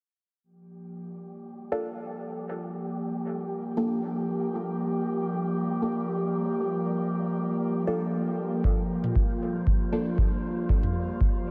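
A lightly swung 117 BPM pulse in 4/4 underpins this cavernous, hazy dub techno fragment in G minor, where an airy, breathy pad holds a Gm7 chord from 0.4 seconds under a filter sweep, chorus and sidechain pumping, joined by a dark, wind-like tuned noise texture drenched in its own reverb. Muted, detuned sawtooth chord stabs with a moving notch, phaser and dub echo decay through the haze. A dry, tape-warm, deep kick arrives up front at 8.6 seconds, followed at 9.0 seconds by layered electronic toms captured in a small room, all inside a dreamy mix soaked in long, huge reverb.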